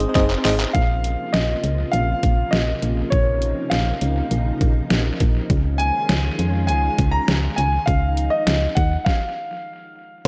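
An echo-heavy mix with light reverb and a digital ambience sets a nocturnal, melancholic tone in this synth-pop excerpt at 101 BPM in 4/4 with a straight feel, in Bb minor. A detuned 8-bit digital drum machine sits up front, overdriven and sampler-style, with a thumpy kick, a medium-tuned snare, hi-hat, handclaps and crash cymbal, and it opens with a drum fill. A punchy, round FM bass holds the low end throughout, while a soft string machine lays silky, vintage sustained chords underneath until 9.1 seconds, when a stop arrives. An FM electric piano with tremolo and tape echo adds mellow accompaniment, heard briefly at the opening and again at the close. From 0.7 seconds a warm, polished grand piano carries the melody with tape echo, over chords moving from Ab to Bbmadd9 and then to Dbadd9.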